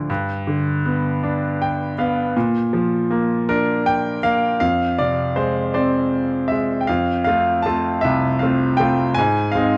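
In a rubato 6/8 lilt at 53 BPM counted in dotted quarters, this dark, reflective fragment of a lyrical classical solo piano piece features a bright, brilliant grand piano placed up front and intimate, its action noise audible, spanning C2 to A5 with a brief fill at 1.2 seconds, moving through G, Bb and Fm before shifting to a new section on F at 6.9 seconds and touching Ab, all set in a warm production with moderate recital hall reverb.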